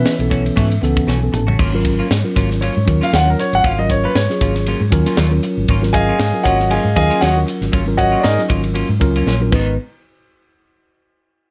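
Intense and nocturnal, this short cut from a longer electric jazz fusion piece in G# minor moves at 117 BPM with a light 16th-note swing, as a clear, intimate grand piano with audible action noise carries the melody and solos from 1.6 s, over mellow tine electric piano fills, twangy clean electric guitar stabs with subtle chorus, a round, dark hollow-body bass, a tight funk kit with a high-tuned snare and punchy kick, and a very quiet archtop guitar heard only in the first second, all in light reverb over B9sus4 and G#13sus4 harmony.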